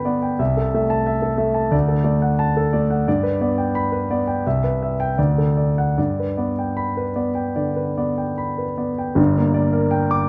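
Classical romantic character piece for solo concert grand piano, passionate and warm in mood, moving in a rubato 4/4 between 72 and 91 BPM in G major. The piano sits up front with an intimate, smooth, vintage tone, deep bass reaching down to G1, and audible action noise, set in a moderate recital hall reverb. Its harmony passes from Am/C through D, G and Cmaj7 back to G, then darkens to G minor at 9.2 seconds before this brief excerpt breaks off at 10.3 seconds.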